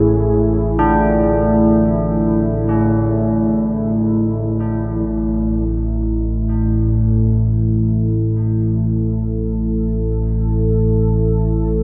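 This ominous, desolate dark ambient drone in A major drifts in free time, opening with a nasal, detuned sawtooth analog drone low in the register and a deep, moody analog pad holding sustained chords, both up front with chorus. Smooth, bronze carillon bells with a minor-third overtone play arpeggios through a delay from the start until 8.4 s, while the drone and pad carry on to the end of this fragment of a longer piece. A wet cathedral reverb with a 5.9-second decay surrounds the sound, and a new section begins at 5.1 s.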